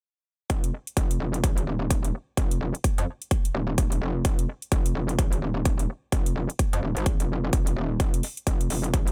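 A gritty digital ambience surrounds this swaggering bass house passage, cut from a longer piece, with a swung sixteenth-note feel and all three parts arriving together at 0.5 seconds. A punchy, layered electronic kick sits up front with studio reverb, while layered electronic hi-hats sit lower in the mix with their own studio reverb. Carrying the groove is an aggressive FM wobble bass, low and metallic, with a sine core and fast attack, thickened by chorus and tube saturation, compressed, and pumping through sidechain.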